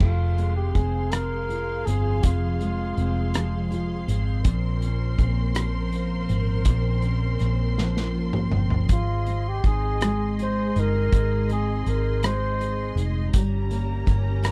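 The recording is dry, with little reverb, and the drums and bass sit up front. This fragment of a melancholic, aching pop ballad in F minor moves in a slow 6/8 at 54 BPM, with the chords turning from Fm to Bbmadd9, Ab and Gdim. A picked steel-string acoustic guitar, double-tracked and full-bodied with a jumbo depth, carries the accompaniment throughout. Underneath, a vintage foam-muted electric bass gives round, amped low notes, and a loose indie kit in a small, pumping room adds a tight kick, a medium-tuned snare, rim clicks, hi-hat, toms and crash, with a drum fill at 7.8 seconds. A muted studio string section plays con sordino, bowed with vibrato, and holds lush, veiled chords. Over this, a bucket-muted trumpet sings a distant, jazz-style solo line with scooped notes; it drops out at 4.1 seconds and returns at 8.9 seconds.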